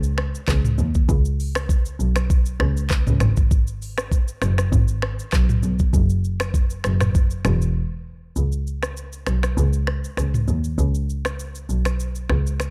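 A bowed double bass, played sul tasto by one player with a soft attack, carries the low end of this sultry afrobeats excerpt; its pure, floating tone sits up front yet feels distant. An electronic afro-pop drum kit with a knocking kick, smooth hats, handclaps, finger snaps, rim clicks, shaker and toms drives the 99 BPM groove in 4/4 with a light 16th-note swing, and a break at 7.8 s leads into a new section at 8.4 s. A dark, digital ambience frames the production.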